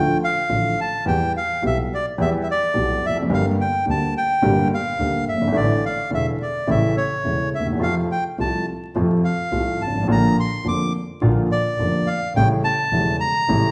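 A tango at 106 BPM in 4/4, played with a rubato feel, this excerpt carries a melancholic, tense mood across its 13.7 seconds. The reedy bandoneon takes the melody in a high register, sitting up front alongside the upright piano, whose woody accompaniment spans from deep bass notes to the middle of the keyboard. Beneath them a single bowed double bass adds a rich, boxy low line with smooth, even tone and vibrato, set somewhat lower in the balance. The harmony moves from D minor through E minor and G minor to a suspended A resolving to A, then F and B-flat before closing on A7. The trio is heard from further back in a large studio with a wet reverb of 1.3 seconds, and vinyl crackle gives the sound an aged surface.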